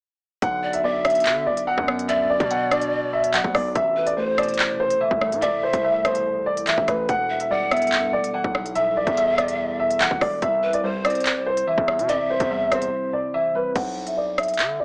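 Hip hop drill with a dark, ominous half-time feel, cut from a longer piece, where a boxy, long-sustaining concert grand piano carries the up-front melody over a drill kit with a hard-clipped kick, crisp hats, handclaps and rim clicks, while a saturated, aggressive 808-style bass, chorused digital keys, an ethereal glass harmonica in the background and a breathy bamboo pan flute with vibrato and tape echo fill out a gritty, small-speaker sound before a brief break at 12.9 seconds.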